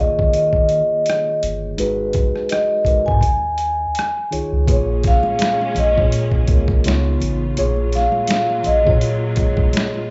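A club-reverb haze hangs over this short, sultry R&B and neo-soul cut, which sounds like a live gig heard through a venue's PA, with the top end dulled so nothing rises above 7.8 kHz. At a relaxed 83 BPM in 4/4 with a light sixteenth-note swing, a vibraphone played with soft mallets carries the melody, its metallic ring shimmering with slow motor vibrato and a slapback echo. A mellow, clean tine electric piano shares that echo as it comps beneath, moving through smooth extended chords such as D#9sus4, G#m9 and F#maj9/A#. A round analog bass adds deep, dark, sustained notes with a filter sweep, while a gritty, pitched-down boom bap sampler-style kit sits up front with a thumpy kick, a high-tuned snare, hi-hat and rim click, all pushed through overdrive. At 4.7 seconds a distant, lush bowed string section enters with soft-attack sustained chords, joined by very quiet, thin-skinned congas that add damped, bright percussion until the fragment ends at 10.1 seconds.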